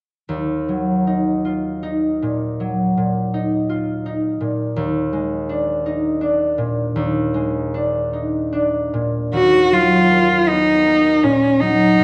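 This romantic classical duo for cello and harp is melancholic and solemn, moving slowly in a flexible, rubato 12/8. The concert harp opens alone with mellow, ringing fingerpicked chords, and at 9.3 seconds a single bowed cello enters up front with a focused, clear tone and vibrato to carry the melody over the harp. A recital hall's reverb and a dark production surround both instruments in this short section cut from a longer piece.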